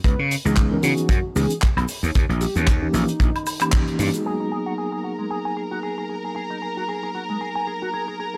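A dry, gritty hardware recording with a touch of studio reverb frames this groovy, sleek nu-disco excerpt, cut from a longer piece and set on a swung sixteenth-note feel. In the opening, a growly, overdriven slap bass with sidechain pumping sits up front with a tight, natural kick and a small-room funk kit of handclaps, hi-hat, shaker and woodblock. A dark, round octave-layered synth lead with chorus and tape echo stays in the background, and a mellow tine electric piano with its own tape echo plays from 0.4 s to the end. After a band accent at 3.7 s, a smooth violin section with vibrato and sidechain pumping holds sustained chords from 4.3 s, joined by a twangy, envelope-filtered electric guitar riff with subtle chorus, a low-pass filter and tape echo.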